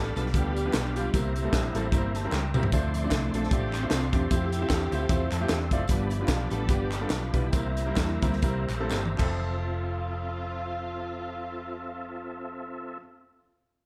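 A swung 4/4 groove moves at 114-152 BPM in this reverent, soulful uptempo gospel excerpt in F major, slowing from 5.9 s as the chords cycle from G7 and C7 through Dm7 to Fmaj7. A dark, woody string section carries the lush bowed melody over brilliant grand piano with its own fills, a clean tonewheel organ holding chords through a fast rotary speaker and chorus vibrato, and a round, hollow-body fingered bass. Gritty, punchy acoustic drums with a high-tuned snare sit up front with fills until 9.3 s, while distant tambourine, egg shaker and group handclaps stay in the background, all in a dark production with light reverb.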